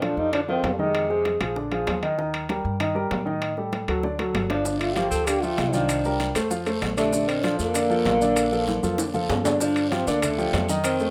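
A straight 4/4 groove sets this lively, sophisticated Afro-Cuban jazz excerpt in motion, cut from a longer piece. Ringing congas, round low-tuned bongos played with soft hands, and vintage metal-shell timbales keep the percussion bed going throughout, with drum fills along the way, while a raspy guiro and grainy maracas join at 4.7 seconds. A warm, up-front grand piano comps through the shifting jazz chords, and a woody, growly pizzicato upright bass gives the low end a thumpy pulse. The melody comes from a veiled, bucket-muted trombone with vibrato, soft attacks and scooped notes, sounding distant and roomy, shadowed by a clear, punchy tenor saxophone line sitting in the background. Both horns play briefly at the start, drop out at 1.4 seconds and return at 4.5 seconds. The whole has the feel of a rough home demo mix, bathed in wet studio reverb.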